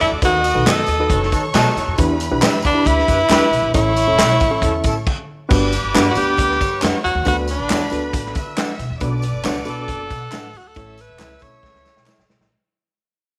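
Bathed in a moderate echo-chamber reverb, this danceable, uptempo 1960s-style soul excerpt at 137 BPM sets a breathy, scooping tenor saxophone up front over a lush bowed violin section, punchy vintage horns, a woody pizzicato upright bass, a distant big-band drum kit with dark cymbals and a boomy kick, close, dry tambourine and handclaps, a worn, lightly overdriven reed electric piano with fast tremolo, and slightly broken-up electric guitar stabs, pausing for a brief stop at 5.1 seconds before fading out from 5.5 seconds and closing on a drum fill at 11.6 seconds.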